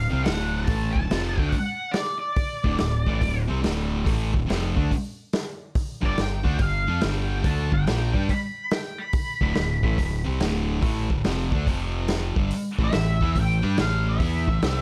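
A thick, bright, double-tracked fuzz guitar riff, a dark octave-fuzz lead guitar with wah and a growling overdriven fingered bass open this raunchy, driving blues rock and southern rock excerpt at 142 BPM with a swung feel. They are joined at 0.3 seconds by an up-front vintage acoustic drum kit with a tight kick and rolled-off top, while the lead plays in short melodic phrases over chords moving from D7 to G7 and then to D5, F5, G5 and A5 in a light reverb.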